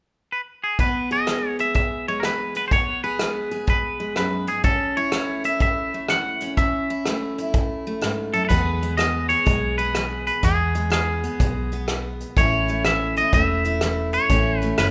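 A moderate recital-hall reverb gives this easygoing, down-home honky-tonk and classic country clip in E major a roomy glow, moving at 124 BPM in 4/4 with a swung eighth-note feel over E and A chords. A bright, twangy, clean electric guitar carries the melody up front from 0.3 seconds, while a full-bodied dreadnought steel-string acoustic guitar picks the accompaniment and a soft brush kit with a tight kick, hi-hat and rim click keeps time from 0.8 seconds. At 8.5 seconds, as the second section begins, a dark, round, foam-muted vintage electric bass enters with a punchy fingered line.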